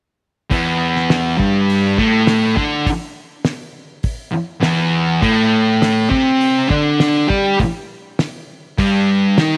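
Garage rock in a raw, swaggering mood, this short excerpt cut from a longer piece moves at 102 BPM in a straight 4/4. A thick, double-tracked fuzz guitar plays the riff up front, its picked, distorted tone spanning E2 to G4 from 0.5 to 9.6 seconds. Beneath it, a cloth-damped drum kit of hi-hat, kick and snare gives a dry, thuddy pulse, with a fat snare, a tight kick and a dark, rolled-off top sitting lower in the mix than the guitar. The harmony moves from Emadd11 to Csus2 at 5.2 seconds. Light reverb suggests a small room around the pair.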